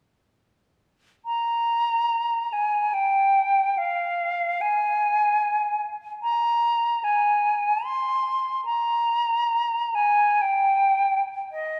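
Classical and serene, this lyrical passage for unaccompanied silver concert flute unfolds in free time in Ab major, the pure, metallic tone sung with vibrato and clean tonguing from 1.3 to 11.8 seconds across a span from Eb5 to C6, set in a wet church reverb whose long tail lends the close, expressive line a distant glow, the whole cut from a longer piece.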